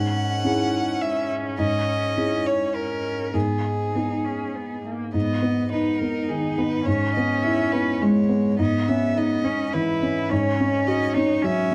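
Fragile and melancholic, this brief neoclassical passage from a longer piece drifts in a rubato three-beat lilt as a clear, close violin sings the melody with smooth vibrato over a rich, more distant cello's second line, both bowed by single players, while a soft, felt-muted upright piano with audible action noise sits up front, intimate and mellow, supplying the accompaniment through chords hovering around G#m, all framed in a dark production with light reverb.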